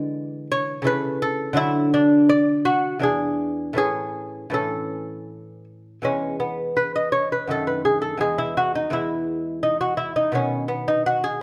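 A solo lute opens this short cut from a longer baroque-style dance, fingerpicked and delicate on its gut double strings, some of them doubled at the octave. The mood is radiant and flowing, moving in 3/4 at about 83 BPM with a rubato feel that lets the pulse breathe. In A major, the harmony passes through an E7 over D, A over C#, D and E7 before settling on A, then shifts toward E major at 6.1 s with a D# diminished chord over F# and a close on B at 10.4 s. The lute ranges from a low E2 up to D#5, its tone warm and up front. A moderate recital hall reverb with a 1.4 s decay surrounds the playing, and the instrument is tuned to A4 = 438 Hz.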